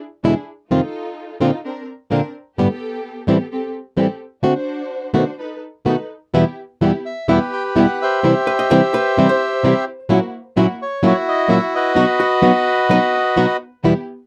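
A fingerpicked acoustic flamenco guitar opens at 0.2 s, sitting up front with a warm tone, while a dark symphonic string section adds bowed, vibrato-rich stabs from the background. This melancholic, tense tango moves at 128 BPM in 4/4 with a rubato feel. Its opening passage wanders through chords such as E7, Bbadd9 and Am7 before the second section settles into E harmonic minor over Em, C, F#7/A# and B. A reedy, vintage-sounding bandoneon takes the melody at 7.1 s, close and band-limited. At 8.5 s a clean, compressed hollow-body archtop guitar adds a picked second line in the background, coloured with tape echo. The dry, close booth sound gives the recording a 1970s studio character, and the fragment is cut from a longer piece.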